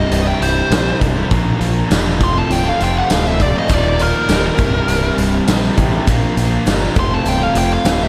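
A nasal lead guitar with a parked wah opens straight into a solo from the first moment, its warm, overdriven tone riding above a classic rock band at 101 BPM in a straight 4/4 feel. Beneath it, two picked rhythm guitars sit in the background playing riffs, one bright, compressed and distorted, the other dark and sludgy with overdrive and a slapback echo. A growling fingered bass, overdriven and amped, holds down the low end while a big acoustic drum kit sits up front with hi-hat, tight kick, medium-tuned snare and tambourine in a bright stone room. At 3.7 seconds a grainy egg shaker enters, barely audible. The chords cycle through C, Bb, F and Ebsus2, and a lush hall reverb gives this driving, confident fragment of a longer piece a big arena sound.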